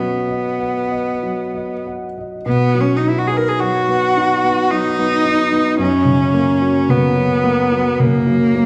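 A clear, smooth cello, played by a single player, carries the bowed melody with light vibrato, singing even and up front over a slow, rubato 3/4 pulse of about 47-56 BPM in B major. A warm, intimate concert grand piano accompanies throughout, with deep bass, a vintage character and audible action noise, as the harmony rests on B before moving to F# at 5.8 s. The serene romantic duo sits in a wet concert hall reverb, and this short fragment is cut from a longer piece.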